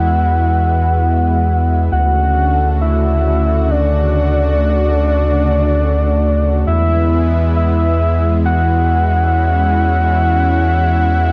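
Romantic and dreamy, this short synthwave passage drifts in free time in E major, cut from a longer piece and lasting about 11.3 seconds. A soft, octave-layered synth lead carries the melody up front, its full, rounded tone blending triangle and sawtooth with a sine sub octave, colored by chorus, tape echo and a gentle vibrato. Beneath it, a lush unison pad holds sustained chords with a thick, warbling, vintage character from detuned sawtooth voices, chorus, slow attack and long release. A deep analog bass, warm and dark with a touch of tube saturation, sits prominently at the bottom of the mix. The harmony moves from E to Dmaj7 at 1.9 seconds and back to E at 6.7 seconds, all three parts sounding together throughout under a light reverb.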